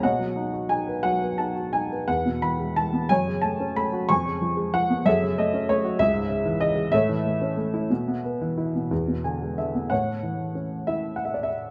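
Close, detailed microphones and a light reverb give this recording an intimate, natural sound, with the upright piano sitting up front. It is a short, calm and tender passage of lyrical classical solo piano, cut from a longer piece, in a lilting 6/8 played with rubato. The woody, slightly detuned tone and short sustain give the instrument a homely, unpolished character as it spans a range from deep bass notes to bright upper register. The harmony moves gently through major and minor colours, with added-note chords lending a soft, open quality. A brief piano fill arrives at 8.9 seconds and leads into a new section at 9.9 seconds, which settles onto a fresh chord before the passage is cut off.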